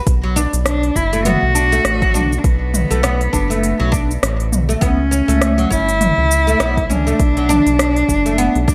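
Hypnotic organic downtempo with a swung sixteenth-note feel, where a round, dark analog bass with tube saturation and an overdriven deep electronic kick anchor a kit of smooth hats, cabasa, rim click and toms re-recorded in a large room, while a bright, woody oud plays echoing arpeggios from 0.2 seconds and a rich, focused bowed cello with vibrato carries the delayed melody up front from 0.7 seconds over chords moving from Bm7 to C#m7b5 to D6 in light digital ambience.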